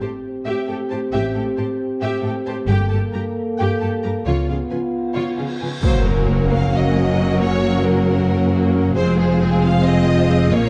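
A dark production sits in a moderate scoring-stage reverb, giving this short cut from a longer epic orchestral film score a relentless, dramatic weight. Set in A phrygian, it drives forward at 268 BPM in eighths across an uneven 7/8 metre with a straight feel. Lush bowed violins carry an expressive vibrato melody with a smooth top, while a second, more focused violin line sits in the background, and rich violas fill out the accompaniment beneath them. A mellow, tight French horn section holds sustained chords in a classical style, and close, focused cellos anchor the bass, joined at 1.1 s by an even double bass section. At 5.6 s a huge, dark cymbal swell builds into an impact at 5.8 s, where a background string section enters with sustained chords marked by portamento. The harmony moves from Am7 through Gmadd9 and C#7 to Gb, settling on Fm at 9.0 s.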